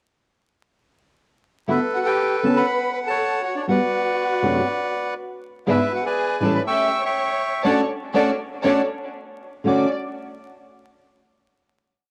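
A reedy bandoneon leads this brief, playful and passionate tango in D major at 121 BPM with a rubato feel, its motif-based melody up front over short thumb-plucked chords from a fresh-stringed nylon guitar and a lush, vibrato-rich violin section doubling in octaves, while a biting, distant string section enters at 5.7 seconds with milonga stabs through analog delay, the band accents together from 7.7 seconds before a final Dmaj7 at 9.6 seconds, all set in moderate spring reverb with the character of a cassette home recording and vinyl crackle.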